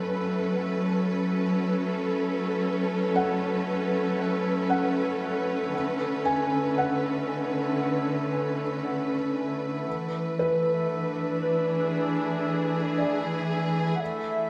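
A lush, vibrato-rich symphonic string section holds bowed, sustained chords up front in this warm, luminous ambient piece at 58 BPM in A major, moving through A69, Bm9 and E7, while a thin, felt-muted upright piano plays mellow arpeggios through tape echo, a reedy, breathing harmonium sustains a quiet drone, and a velvety, detuned synth lead with chorus enters at 14.0 s just before this fragment of a longer piece cuts off, the whole mix sitting in a wet echo-chamber reverb.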